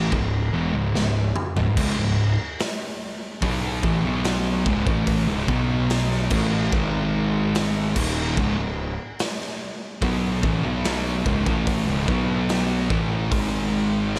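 A raw, gritty recording set in a bright stone room with a light studio reverb, this short excerpt of stoner and doom metal moves at a heavy, ominous 73 BPM in 4/4 and C# minor. Up front, a saturated garage drum kit with a punchy kick and medium-tuned snare works across crash, hi-hat and toms in a pumping room sound, entering at 0.1 seconds and dropping a fill between 0.9 and 1.8 seconds. Two thick fuzz guitars play the riff in the background, one dark and the other warm, both distorted and picked. Beneath them, a picked electric bass, direct and amped with overdriven fuzz, gives a punchy low end down to C#1. The progression sits on C# minor before descending through B5, A5 and G#5 power chords, and the whole cycle returns at 8.0 seconds.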